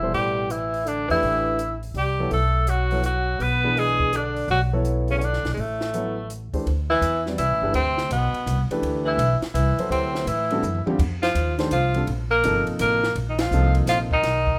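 Two tenor saxophones open this searching, hypnotic modal jazz waltz fragment alongside grand piano and upright bass: a clear, up-front lead with light vibrato and scooped notes rides over a warm, subtoned second sax, while woody pizzicato bass, natural deep-voiced piano and a punchy small-room cocktail kit with a high-tuned snare swing in a touch of reverb through chords such as Am9 and D13sus4, with a drum fill at 10.6 seconds and a band accent at 13.3 seconds.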